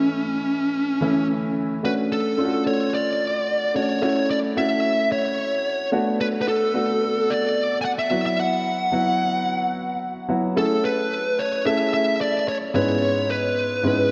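A dreamy mix soaked in lush hall reverb frames this short cut from a longer nostalgic, dramatic pop piece, moving in a straight 4/4 at 110 BPM. A distorted, compressed fuzz lead guitar sits up front carrying the melody through a diffuse ambient delay, while a natural-sounding baby grand piano, also close and present, supplies warm accompaniment throughout all 14.1 seconds. The harmony drifts from A through Dmaj7, F#m7, Bm7 and Esus2 before settling on Amaj7 at 10.6 seconds and closing on C#m7/G#.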